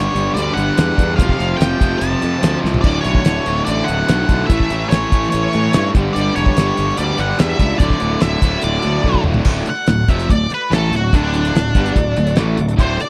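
A dark, fuzzed lead guitar carries this sunny, swaggering classic rock excerpt at 145 BPM in a straight 4/4. The octave-fuzz melody is colored by wah, distortion and slapback echo, and it rides over a chunky bed of three picked rhythm guitars, all playing the riff in the low register. These are a cranked stack guitar with overdrive and a tight distorted guitar, both bright and set back in the mix, and a very quiet, double-tracked overdriven guitar. A growly, punchy fingered bass with fuzz and overdrive anchors the low end. A very quiet, shouting tonewheel organ holds sustained chords through a rotary speaker, moving through G, F, D, A, G and Dadd9. The dry, up-front 1970s-style kit comes in at 0.2 seconds with a fat snare, tight kick and rolled-off top, and a fill from 9.1 seconds leads into a lead guitar solo over D at 9.5 seconds.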